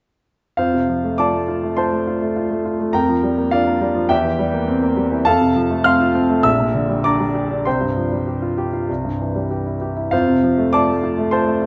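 A clear concert grand piano opens at 0.6 seconds and plays alone throughout this short classical excerpt, a virtuoso piano study in F major with a heroic, brilliant character. The tempo sits around 96-104 BPM in 4/4, handled with a flexible rubato feel, and the tuning rests slightly below standard at A4 = 438 Hz. The piano ranges from Bb1 up to F6, its tone natural and up front with a deep bass. The harmony moves from F through Gm7/F and C7/E back to F, then on through Gm/Bb to a Csus4 that settles onto C before returning to F at 10.1 seconds. A moderate recital hall reverb surrounds the instrument, and the top end is gently rounded, with the passage ending at 11.7 seconds as it is cut from a longer piece.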